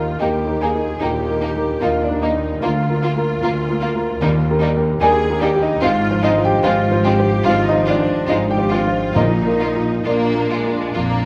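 A moderate scoring-stage reverb gives this lush, passionate classical excerpt in Eb major a spacious glow, its rubato 4/4 pulse drifting between 67 and 76 BPM over a progression of Eb, Bb/D, Fm/Ab and Bb. An up-front concert grand piano with a deep bass and vintage smoothness carries the melody, while a symphonic violin section adds a focused, vibrato-rich line in the background and a more distant studio violin section supplies an even second line, both entering at 0.2 seconds. Beneath them, an intense viola section with a smooth top, a background cello section, a bright bowed double bass section and round, soft-mallet timpani on calf heads fill out the accompaniment, with the timpani falling away at 10.5 seconds.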